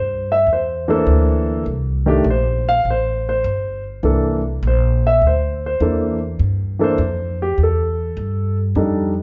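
Heard from further back in a large studio with a moderate reverb tail and a muffled, rolled-off top end, this short excerpt from a longer jazz piano trio piece has a relaxed, playful swing feel in 4/4. A dark, mellow concert grand piano takes a solo melody from the start, moving over C13 and Gmadd9 harmonies. A woody, pizzicato upright bass with steel strings sits up front alongside it, carrying the low line through to 9.2 seconds.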